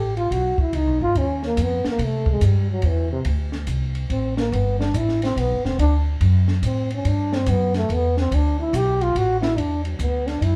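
Relaxed and swinging, this short excerpt of small-group jazz moves at 143 BPM in a lilting 3/4 in G major, cut from a longer piece. A mellow, breathy trombone takes the solo throughout, its soft attack and whispered, intimate tone sitting up front across a range from C3 to G4. Beneath it, a woody upright bass plucks the low end up close, reaching down to E1. A compact cocktail drum kit enters at 0.2 seconds, sitting quietly behind with a high-tuned snare, punchy kick, hi-hat and ride, its sound dark and smooth with a rolled-off top. The group is heard from further back in a large studio with a wet reverb, while the harmony drifts through colorful chords such as Gadd9, C#9, G69 and Gmaj9 before settling on Esus2 near the close.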